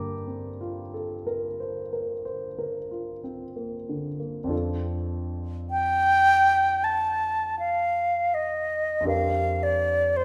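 Rubato and slow in 4/4 at 45-55 BPM, this luminous, dreamy impressionist classical excerpt in F major, tuned to A4 = 437 Hz, opens with a dark grand piano with deep bass, joined at 5.7 seconds by a mellow, airy silver flute that sings up front with expressive vibrato and a soft attack, the duo set in a moderate recital hall reverb as the harmony moves from Gm11 to F6 and then to Gm7/F.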